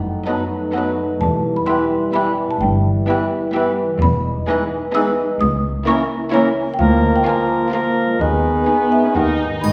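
A woody xylophone with soft rubber mallets carries the melody from the first beat over dark French horn chords, ringing thumb-plucked harp arpeggios, a clear cello section and a rich double bass section, and at 0.3 s a very quiet violin section joins it on the melody while a mellow clarinet, an airy, hollow baroque flute, a distant oboe and a lush violin section in the background weave second lines above a bassoon and a smooth viola section in support, giving this mischievous, quirky excerpt of a whimsical film cue in E minor a straight 3/4 at 128 BPM, all set back in a wet scoring-stage reverb until a close triangle sounds at 9.6 s.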